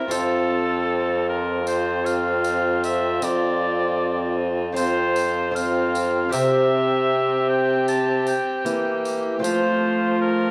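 Classical Renaissance-style consort dance, stately and festive at 77 BPM in a straight 4/4 and moving from F through C back to F, in which an up-front oboe with a clear tone and light vibrato carries the melody over a dark, nasal gut-string violin on a distant second line, a reedy period-style viola, a very quiet, delicate fingerpicked double-strung lute, and a soft-attacked solo bassoon holding the bass, while a jingly, bright tambourine sits close and dry until 9.8 s amid the wet bloom of a recital hall in this brief passage cut from a longer piece.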